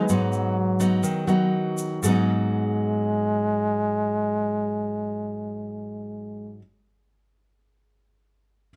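A mellow trombone, a fingerpicked nylon-string guitar and a baby grand piano open together on a G#m7 chord, with a grainy, bright egg shaker joining a moment later in this smooth, intimate bossa nova fragment in G# minor. The tempo sits between 116 and 130 BPM in a straight 4/4, and it slows over the first 2.0 seconds. Up front, the close-miked trombone carries a jazz-style solo melody with vibrato in a narrow low range, while the classical-toned acoustic guitar provides accompaniment at the same level beside it. The piano stays in the background with a natural, short-sustained tone between F#4 and B4, and the close, dry shaker stops at 2.2 seconds. The piano outlasts the others, playing on until 8.7 seconds. A light reverb, dark production, faint mains hum and tuning at A4 = 443 Hz round out this brief passage cut from a longer piece.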